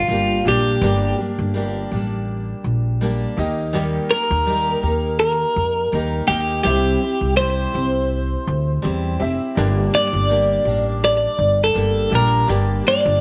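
Acoustic pop in G minor at 82 BPM with a light sixteenth-note swing, this reflective, tender passage from a longer piece puts a twangy, compressed twelve-string electric guitar melody with slapback echo up front beside a woody pizzicato upright bass. A full-bodied picked dreadnought acoustic guitar accompanies, and a brilliant vintage upright piano sits in the background, all in a small, lightly reverberant room as the chords move from Gm through Eb and C, returning to Gm at 9.6 seconds.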